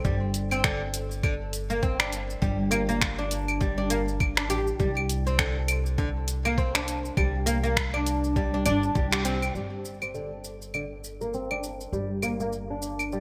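A swung 4/4 groove at 101 BPM drives this hypnotic organic downtempo excerpt in G minor, with 58% swing on the sixteenths. A compressed, sampler-style electronic kick with a gritty, thumpy character anchors the beat. Around it, an overdriven, layered deep house kit of claves, finger snaps, hi-hat and shaker sits up front, re-recorded in a small room and treated with gated reverb. A pizzicato upright bass with steel strings adds a woody low end that pumps against the sidechain. Over this, a deep, fretless oud plucked with a plectrum on double strings plays arpeggios through a low-pass filter and delay, all resting on a G5 harmony. After a band accent at 9.1 s the kick drops out, and from 9.6 s to the close at 13.2 s a filter sweep moves across the oud, all framed by a moderate plate reverb and bright 1980s-style digital production.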